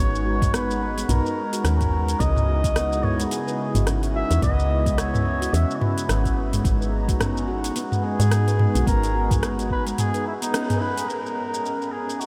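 A cup-muted trumpet carries the melody in this meditative organic downtempo excerpt at 108 BPM in 4/4, its veiled, distant tone trailed by a diffuse ambient delay. Beneath it, a detuned sawtooth pad holds sustained chords with chorus and sidechain pumping. A stainless-steel handpan rings out arpeggios, bright and airy, through its own diffuse delay. A woody, round FM bass, also pumped by the sidechain, grounds the C# dorian harmony as it moves from G#m9 to C#m7 and G#madd9 before settling on C#m near the close. An afro-pop kit of metallic hats, rim click, shaker and toms swings its 16ths alongside a deep electronic kick drum. The dreamy mix is soaked in a huge ambient reverb, with a band accent at 10.5 seconds, and the bass drops out at 9.9 seconds before the handpan falls away at 11.0 seconds.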